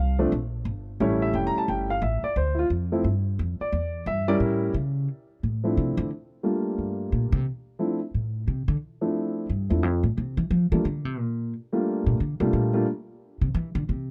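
This jazz piano trio recording is a late-night, moody cut from a longer piece, swinging in 4/4 at 177 BPM in D minor. A dark, mellow upright piano carries the melody and takes the solo spotlight through the opening 5.1 seconds, moving over changes such as A7, Dm7, Em7 and A7b9. From 5.1 seconds the plucked upright bass, woody and warm with steel strings, steps forward for its own solo over Dm7 and Gm7. The piano drops out at 12.9 seconds, leaving the bass to close the passage. Both instruments sit up front in a dry, close, 1970s-style studio sound that keeps the late-night, moody atmosphere.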